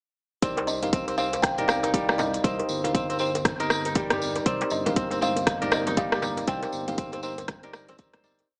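Afro house at 119 BPM in C minor with an earthy, spiritual mood, built on a single Cm7 drop where a punchy four-on-the-floor electronic kick, a house drum kit with metallic hats, rim and low toms, jingly hand-played tambourine sixteenths and a cracking djembe cross rhythm drive fingerpicked kora arpeggios with analog delay, dotted bell-like electric piano stabs and a smooth, dark gliding synth bass, all three pumping against the kick, while a woody kalimba motif floats above, a very quiet detuned analog pad and ringing congas enter around 4.5 seconds, and the whole gritty, small-speaker-sounding piece fades out from 5.8 seconds under a lush hall reverb.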